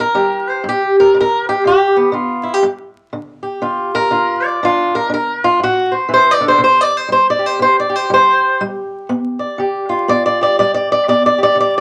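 A fingerpicked steel-string acoustic guitar sits up front and carries this short cut from a longer piece alone, playing from 0.0 to 11.8 seconds. It's acoustic country blues in G mixolydian at 121 BPM in 4/4, with a swung eighth-note feel that gives the music a soulful, rollicking mood. The guitar's tone is warm and boxy, ranging from G2 to D5, as it works through C7, G7, D5 and C5 before returning to G7 at 8.6 seconds. A wet club reverb with a 0.7-second decay surrounds the playing, and vinyl crackle adds an aged, well-worn texture to the sound.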